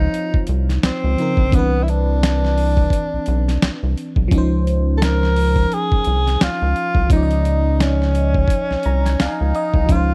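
Relaxed and warm, this short neo-soul and R&B excerpt sits at an easy 86 BPM in Db major, with a gentle sixteenth-note swing. A breathy tenor saxophone carries the melody up front, jazz-styled with light vibrato, scooped notes and a smooth top. Underneath, an FM electric piano supplies glassy, bell-like chords of Dbmaj9 and Cmaj9, coloured by chorus and phaser, and adds a fill from 8.5 to 9.9 seconds. A rubbery square-wave bass gives a hollow, bouncy, nasal pulse with a plucked filter attack. A compressed, pitched-down boom bap drum kit enters at 0.1 seconds with a gritty, thumpy kick, a medium-tuned snare and hi-hat, all heard in a dry, close recording with a 1970s studio character.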